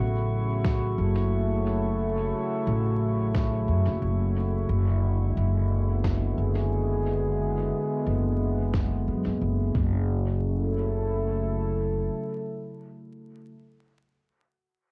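Ambient dub with a deep, spacious mood and a gently swung 4/4 feel, this excerpt from a longer piece rests on a smooth, warbling analog pad with chorus and tape coloring, sitting up front beside a woody, pizzicato upright bass on gut strings. A faint glassy texture of drifting overtones hangs bright in the background, while a muffled, pitched-down sampler kick and a quieter, compressed snare with dub echo enter at 0.6 seconds. The harmony moves from F#m7 to E7/F# and settles on F#5 before returning to F#m7 at 10.1 seconds, framed by light reverb, a home-cassette character and vinyl crackle.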